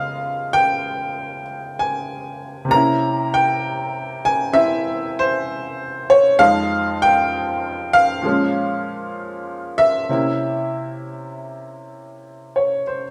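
Solo jazz at a slow 65 BPM with a cool, swinging 4/4 feel, this short excerpt features a lone upright piano, brilliant and woody, sitting up front with audible action noise as it moves through Db7, C7b9, Fm7 and Bbm7 chords in a stone room whose wet reverb lends an intimate, natural live sound.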